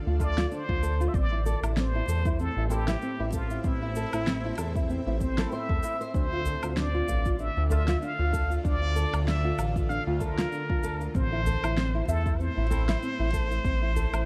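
A tense, string-like drone opens this meditative, mystical organic downtempo excerpt, soon joined by thumb-plucked nylon-string guitar arpeggios, a smooth, up-front synth bass and a plunger-muted trumpet whose wah-wah melody with vibrato carries the lead through tape echo. Beneath them, a deep electronic kick and a layered kit of electronic cabasa, fat snare and woodblock lay down a lightly swung groove, while a bright, twangy clean electric guitar sits in the background with chorus and echo until 12.9 seconds, and a very quiet, close and dry udu enters at 6.5 seconds. The chords shift between D minor and A minor, and the drone, bass and electric guitar share a sidechain pumping within a dark production with light reverb.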